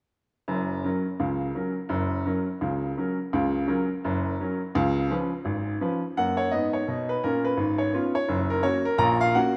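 A brisk swing at 170 BPM in 4/4 drives this exuberant stride-piano excerpt in F# major, cut from a longer piece and running from 0.5 to 9.6 seconds. A single upright piano carries everything, its tone bright, woody and vintage, sitting up front in the mix and spanning from F#1 up to A#5. The harmony rests on F# and C#7, with a passage from 6.2 seconds moving through C#7/G# and back to F# before landing on F#/A# at 9.0 seconds. A long, wet plate reverb gives the piano a lingering halo, while the rough home-demo mix keeps the feel loose and informal. The result is a short, swinging burst of old-style jazz piano full of buoyant energy.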